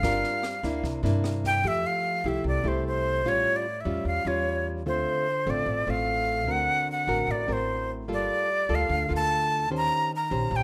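A breathy, bright jazz flute with vibrato and a chiffy attack carries the melody up front in this relaxed, sophisticated bossa nova cut from a longer piece at 149 BPM in F major, over fingerpicked classical nylon-string guitar and a woody, thumpy pizzicato upright bass, while an open jazz drum kit with punchy kick, rim click and high-tuned snare plays only until 1.5 s, all in light reverb as the chords move from Gm7 through Fmaj9 and A7b13 to Eb13.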